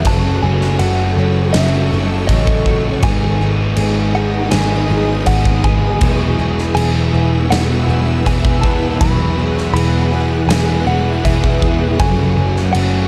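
A straight 4/4 pulse at 80 BPM from a huge arena drum kit, with punchy kick, medium-tuned snare and crashing cymbals in a hall sound, anchors this wistful, hazy shoegaze and dream pop excerpt in E major, with a round, foam-muted vintage electric bass underneath and the drums dropping out at 12.9 s. Riffs from an overdriven semi-hollow guitar, its hollow-body tone washed in reverse reverb, and a thick fuzz guitar with analog chorus sitting further back fill the low end, while a very quiet, octave-doubled picked twelve-string acoustic guitar spins jumbo-bodied arpeggios. On top, a compressed, clean direct-recorded electric guitar sings a bright melody through analog chorus and tape echo, floating over an ethereal, granular ambient pad with octave-up shimmer as the chords move from F#m through G#m and Eadd9 to F#madd9, all in a dark, warm small-room production.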